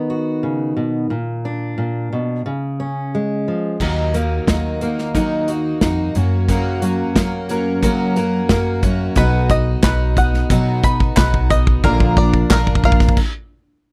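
Indie folk in Eb minor at 90 BPM, bittersweet and wistful, opening on a warm, fingerpicked steel-string acoustic guitar up front before a shimmering, octave-doubled twelve-string, a woody, growly pizzicato upright bass and a punchy country drum kit with dark cymbals join at 3.8 seconds with a drum fill to begin a build-up, then a felt-muted upright piano with audible action noise sits in the background as a twangy banjo plays arpeggios from 9.2 seconds, hollow group handclaps add percussion, and the dry, close 1970s-style recording ends on a stop at 13.2 seconds in this cut from a longer piece.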